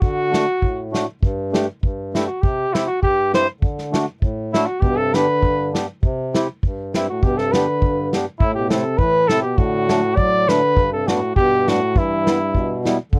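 A jolly, bouncy alpine folk dance band tune in 2/4 with a rubato feel opens with a classical-style flugelhorn carrying the melody with light vibrato over a reedy, round accordion accompaniment and an up-front acoustic drum kit with a punchy kick and medium-tuned snare, joined at 4.8 s by a soft-attacked, warm euphonium playing a second line, all captured in a dry, close 1970s-style studio sound.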